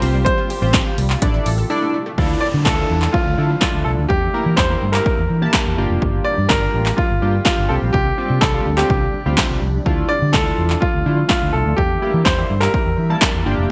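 A straight, driving pulse from a punchy, dry analog drum machine propels this confident dance-pop excerpt, its kick, snare, hi-hat and handclaps sitting up front under a gated reverb. A dark, round, foam-muted electric bass pumps against the kick, and a glossy, retro chorused polysynth pumps along with it on sustained chords. A clear, polished baby grand piano carries the melody through a digital delay. Far beneath, a very quiet, shimmering ambient pad holds evolving, ethereal sustained chords. In the opening bars, a lush, bright unison pluck spins delayed, chorused arpeggios in the background until a brief silence from 1.7 s to 2.2 s. The music then moves into a new section with a faint electronic downlifter running to 6.0 s, all framed by light reverb and a bright 1980s-style digital sheen.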